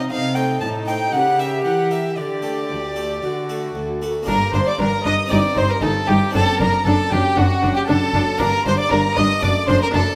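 Driving and dramatic, this baroque-style concerto excerpt in G minor at 116 BPM puts a rich, reedy solo violin up front over background violin sections, a gut-string viola section, a nasal cello section and a brilliant, close-miked harpsichord, with a double bass section entering at 4.3 seconds as the harmony settles from dominant tension onto G minor, all set in a wet recital-hall reverb.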